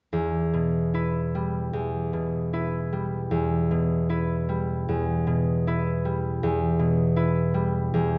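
Rubato at about 77 BPM in 4/4, this short classical excerpt in E minor moves with a solemn, melancholic air, tuned to A4 = 442 Hz and opening on an E minor chord. A concert harp plays as accompaniment from 0.1 to 8.2 seconds, fingerpicked between E2 and B4, its mellow, ringing tone sitting up front. The harp is bathed in a wet recital hall reverb, and the sound has a soft, rounded top end.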